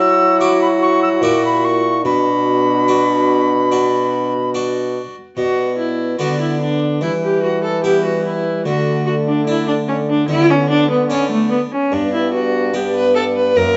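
An up-front viola with a reedy, gut-string tone carries the second line beneath a pure, distant alto recorder melody with vibrato and chiff, while a full, plucked harpsichord with two sets of strings, a smooth-topped trombone with light vibrato and a mellow bassoon bass fill out this courtly, solemn renaissance-style consort dance in B minor at 73 BPM, heard in a dark stone-room setting that moves from F#7 to Bm and on through Em, D5 and G.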